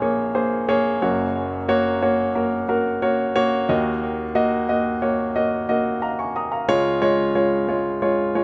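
A polished, up-front baby grand piano sits in a moderate echo chamber reverb, its clear tone touched with tape echo that lends the notes a faint trailing repeat. This short pop excerpt, cut from a longer piece, runs 8.4 seconds at 90 BPM in a straight 4/4 and carries a bittersweet yet driving mood. The piano plays solo throughout, spanning from a deep Gb1 up to a bright Eb6. The harmony opens on Bbm7, moves to Gb at 1.0 seconds, settles on Ebm at 3.7 seconds and lands on Db at 6.7 seconds. Together the chords and the present, roomy sound give the passage a sense of forward motion shaded with longing.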